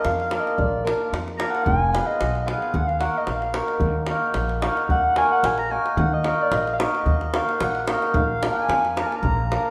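Set in a wet recital hall with a 1.4-second reverb tail, this bittersweet, virtuosic Balkan wedding-band snippet features a pure, round sine lead with chorus carrying the soft solo line over a mellow, shimmering hammered cimbalom up front, a woody, growly pizzicato upright bass and a tight, saturated davul, moving from Bb through Fdim and Ebm back to Bb at 8.2 seconds.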